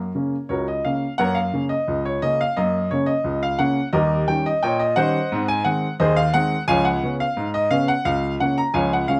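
Lively and cheerful, this brief ragtime excerpt in a straight 2/4 features a solo baby grand piano, clear and open with long sustain and placed up front, ranging from C#2 to A#5 in a modest club room with a short reverb as its harmony moves from F# through D#7, G# and C#7 to a closing C#6 at 8.1 seconds.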